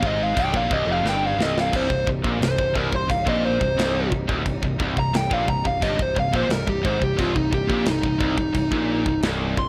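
A light reverb frames this dark, heavy metal excerpt in C minor, cut from a longer piece and moving at 88 BPM in a straight 4/4 that rests on a single C minor chord. Up front, a dark, smooth lead guitar with overdrive and tape echo plays a solo melody across the whole 9.7 seconds, ranging from Eb4 up to C6. Underneath, three picked electric guitars share the low riff: a double-tracked overdriven guitar and a scooped, high-gain guitar with distortion, both sitting in the background, plus a tight distorted guitar held very quiet. A modern picked electric bass with a growly, direct tone sits in the register an octave below the riff. The tight metal drum kit sounds acoustic and mid-forward in a studio room, with a medium-tuned snare, tight kick, crash and splash cymbals, and a rolled-off top, and it plays a fill from 1.0 to 1.7 seconds. Very quiet behind it all, a rich studio string section holds sustained bowed chords with even vibrato.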